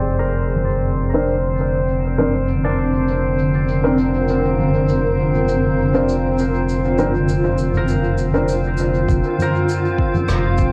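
A round, dark sub bass sits up front in this spacious, hazy ambient dub excerpt at 100 BPM in 4/4, under a cloudy granular pad of sustained chords with a filter sweep, glassy drifting harmonics with chorus, a mellow fingerpicked concert harp arpeggiating through analog delay, and distant soft-mallet rim clicks, shaker and toms soaked in dub echo, while woody upright piano stabs surface in the background from 1.1 to 8.5 seconds before a deep electronic kick drum arrives at 9.1 seconds as the harmony moves from Bbadd9/F to Fm7, all recorded at home on cassette and wrapped in small-room ambience and vinyl crackle.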